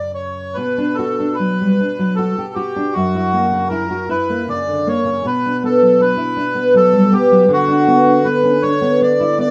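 Romantic duo for bandoneon and classical guitar, serene and lyrical, moving in a rubato 3/4 at roughly 70-82 BPM in B minor. The bandoneon carries the melody from start to finish, its reedy, dark, airy tone sitting up front in a middle register. Beneath it, the nylon-string guitar supplies thumb-plucked accompaniment, acoustic and classical in character and also up front, ranging from deep bass notes into the midrange. The harmony opens on F#5 before settling on Bm at 0.6 seconds, turns to F#7, returns to Bm and closes on Bm/D, all within a single section. The two players perform live together in one room, with moderate studio reverb lending a gentle sense of space to this brief cut from a longer piece.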